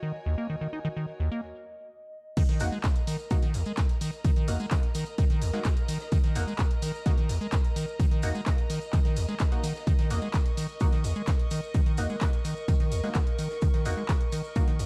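A squelchy, resonant square-wave acid bass riff with a filter sweep sits up front from the start of this trippy, hypnotic acid house excerpt, pumping against a warbling, nostalgic tape-like pad of sustained chords with chorus and reverb and a distant, earthy chamber string section bowing a light-vibrato texture. After a break at 1.4 seconds, the drop lands at 2.4 seconds with a punchy, tape-warm electronic kick up front, an analog drum machine's crash, handclaps and hi-hat, a very quiet big-room rock kit on hi-hat and snare, and grainy maracas in the background. From 2.6 seconds a nasal, band-passed sawtooth chord stab cuts in bright with phaser, subtle chorus and digital delay, all within a dark, small-room production.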